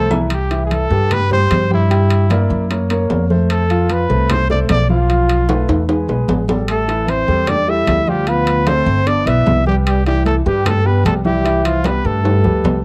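Danceable and sophisticated, this Afro-Cuban jazz excerpt in C major moves at 151 BPM, with a present, vibrato-touched trumpet leading over an intimate concert grand piano with audible action noise and long sustain, a woody, thumpy pizzicato upright bass up front, low-tuned ringing congas in the background and metal-shell timbales and agogo bells, while a dark, whispered trombone joins at 6.7 seconds as a distant second line, all set in light reverb with cassette-tape colour on the trumpet, piano and trombone of a home recording.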